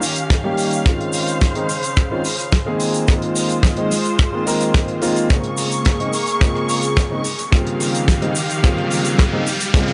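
Veiled, con sordino strings open this excerpt of cosmic, sleek nu-disco, holding dark sustained chords with vibrato and a sidechain pump, while a damped 70s drum kit plays hi-hat, rim click, shaker and a fat snare with a dry, rolled-off top. A tight, mid-forward acoustic kick sits up front in a small room, and a mellow, vintage baby grand piano joins at 0.4 seconds with long-sustaining accompaniment, also pumping and touched by tape echo. The harmony moves through Eb9, Dbmaj7, Ab6 and Bbm7 before returning to Eb9 beneath the straight groove. The whole passage works as a build-up, and at 7.3 seconds an electronic riser enters quietly in the background. The recording has a gritty hardware character with transformer saturation, light reverb and a dulled top end.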